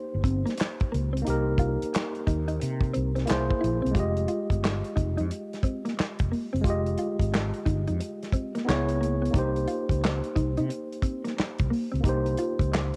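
A growly, round fretless electric bass with analog chorus sits up front in this sultry, soulful R&B and neo-soul excerpt in F minor, moving at 89 BPM in 4/4 with a swung sixteenth-note feel. Around it play a damped 70s drum kit with a dry, tight kick, medium-tuned snare, hi-hat and handclaps; a worn, slightly out-of-tune tine electric piano; and a dark, fingered mellow electric guitar colored by phaser, with cassette tape grit on the piano, guitar and drums. Captured as a home cassette recording in a small room, the harmony moves from Cm7 through Caug7, arrives on Fm9 at 4.0 seconds, then passes through Dbm7 back to Cm7.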